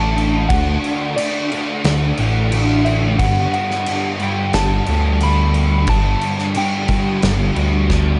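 This short cut from a longer shoegaze and dream pop rock piece feels wistful and blissful, moving in an unhurried, straight 4/4 over a D chord that shifts to Gsus2. A thick, dark fuzz guitar sits up front with a double-tracked, distorted riff thickened by ensemble chorus. Beneath it, a smooth synth bass, also up front, holds sustained low notes with a sawtooth-edged, ring-modulated tone. A soft struck synth lead carries the melody with a round, keys-like FM voice that warbles through chorus and slapback echo, its notes decaying until it falls away at 7.2 seconds. The loose acoustic indie drum kit comes in at 0.2 seconds with a punchy kick, medium-tuned snare, dark cymbals and a pumping room sound, closing on a drum fill at 7.9 seconds. Light reverb and a small room ambience surround the whole mix.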